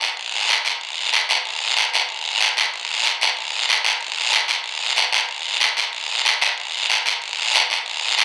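Dry and open-air, this short latin passage is cut from a longer piece, with a single raspy acoustic guiro set up front and playing throughout its 8.2 seconds. At a brisk 187 BPM in a straight 4/4, the percussion carries a passionate, fiery mood all on its own.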